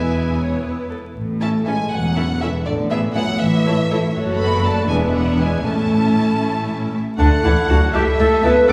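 A quick, spirited classical-period movement for symphony orchestra in A major, moving in a lilting 6/8 at 80 dotted-quarter beats per minute. A rich, expressive first violin section with vibrato carries the melody over a soft, sul tasto second violin line, smooth violas, dark and distant French horn chords, and an expressive cello and focused double bass foundation. At 7.2 s the woodwinds join: a clear, vintage-toned oboe, a mellow, hollow flute section and a roomy bassoon sit in the background while a warm clarinet comes forward, all bathed in a wet scoring-stage reverb, heard from further back, with vinyl crackle.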